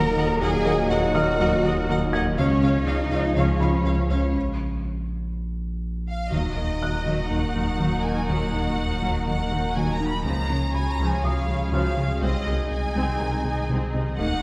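Opening on a bed of airy pad, harp-like synth arpeggios, a fat analog bass riff and deep sub bass, this tense, futuristic hybrid orchestral and electronic film cue in Eb minor at 122 BPM lays lush symphonic violins carrying the melody over violas, portamento-inflected cellos, quiet double basses, a distant studio violin second line and a muted felt piano, while mellow French horns and clear trombones hold chords only until 4.3 seconds, a break follows from 4.4 to 6.3 seconds, and wet scoring stage reverb sets everything well back in the room.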